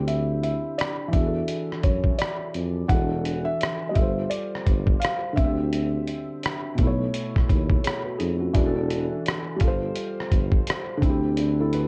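Mellow and nostalgic, this short fragment of a longer lo-fi hip hop piece moves with a swung 4/4 feel over drifting ninth-suspended chords such as D9sus4, E9sus4 and G9sus4. A felt-muted upright piano carries the melody until 7.4 seconds, soft and intimate with audible action noise, while a second felt-muted upright piano plays the accompaniment throughout, its thick felt and dark tone coloured by cassette tape. A tuba supplies the bass line with jazz-style vibrato, and a sampler-style drum kit of hi-hat, rim click and a thumpy kick sits up front, compressed and muffled with vintage 12-bit grit and the air of a large room. At 7.8 seconds a worn, slightly out-of-tune tine electric piano adds a brief second line in the background, trailed by analog delay. Light reverb and a warm, dark production tie the whole together.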